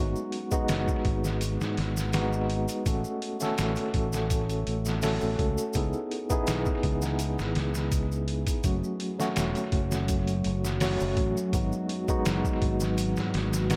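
A straight 4/4 groove at 83 BPM sets a hypnotic, brooding trip hop mood in F# dorian, with a gritty, pitched-down sampler-style drum kit up front from 0.3 seconds, its thumpy kick, medium-tuned snare and hi-hat compressed and given an analog delay. Maracas add a quieter, saturated shimmer from 0.2 seconds, while a fingered electric bass anchors the low end with a warm, amped tone from the very start. A clean tine electric piano carries the accompaniment, sitting forward in the mix with tremolo and tape echo as the chords move from G#m7 through F#m/A and C#m7. At 8.6 seconds a deep analog pad slips in behind everything else, its detuned, ring-modulated swell softened by chorus and a slow attack as the harmony turns to F#m and back to G#m7. The light reverb and echo-heavy mix give this fragment of a longer piece a hazy, nocturnal pull.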